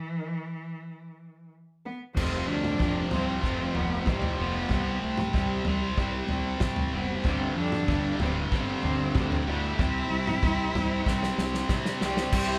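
A distant, bowed cello opens this brooding, angsty excerpt of quiet-loud alternative rock, playing an expressive melody with vibrato and portamento alone until a very quiet, twangy twelve-string electric guitar enters with clean, compressed arpeggios at 2.1 s. The full band then comes in over chords moving from Fsus2 through C5 and Gsus4 to C: an up-front, double-tracked high-gain guitar riff with heavy distortion, a punchy fuzz bass with overdrive sitting in the background, and a loose, small-room acoustic drum kit with a tight kick, crash, toms and a medium-tuned snare that plays a fill from 11.1 s. At 12.3 s a shimmering, vintage string machine with sawtooth violins adds slow-attack sustained chords with ensemble chorus, all within the moderate reverb of a band playing live in one room.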